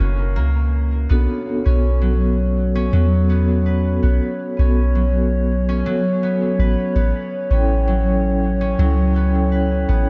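Fingerpicked concert harp arpeggios ringing through tape echo open this smoky, brooding trip hop excerpt at 82 BPM over a deep, round 808-style bass sitting up front, and at 1.1 seconds a mellow, vintage vibraphone with soft mallets, slow motor vibrato, tremolo, 12-bit sampler grit and tape echo enters together with a detuned, wave-folded analog pad with chorus holding sustained chords, the whole dreamy mix steeped in a lush hall reverb and kept dark at the top end as the harmony moves from F# through B7(no3) at 1.1 seconds to A7 at 7.0 seconds.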